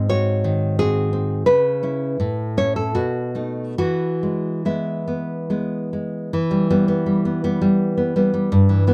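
Romantic solo classical guitar in a sunny, warm 3/4 with a flexible rubato feel, this brief fragment of a longer piece features a full-bodied, fingerpicked nylon-string guitar recorded close and up front with light reverb, where every finger squeak comes through in fine detail before the harmony darkens to a minor chord at 6.3 s as a new section begins.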